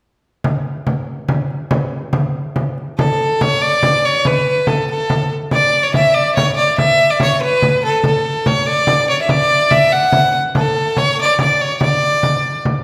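In a straight 6/8 pulse, this festive, rustic medieval dance, cut from a longer piece, opens at 0.4 seconds with a small, bright frame drum played up front with soft hands, close and dry, before a single bowed fiddle, clear and boxy with light vibrato and an intense edge, takes the melody up front from 3.0 seconds, all captured in a reverberant recital hall.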